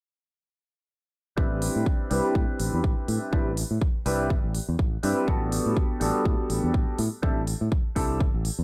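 A brilliant, vintage grand piano with long sustain sits up front in this sensual, nostalgic filtered disco house excerpt at 123 BPM in A dorian, with a swung 16th feel, its chords moving from Am11 to Gmaj9/A and then C69/A through phaser, sidechain pumping and a low-pass filter, while a direct, up-front fingered electric bass pumps under its own filter, a punchy layered kick with small room ambience drives the groove, and crisp pumping hi-hats join at 1.6 seconds, the mix carrying light reverb and a dry, gritty hardware character.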